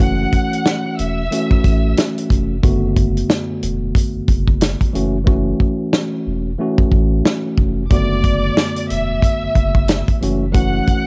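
A bowed violin section with smooth vibrato opens this reflective, gritty boom-bap hip-hop excerpt at 91 BPM in F# minor, over a mellow tine electric piano moving between F#m7 and Bm7, a deep, round dub sub bass with transformer saturation, and a dry, tight soul drum kit swung on the 16ths and sitting up front. The strings drop out after the first two seconds and return at 7.9 s, while the hi-hats fall silent from 5.3 s to that same moment. The strings and keys carry a filtered cassette tape colour, the drums share that tape grit, and studio reverb frames the home-recorded feel.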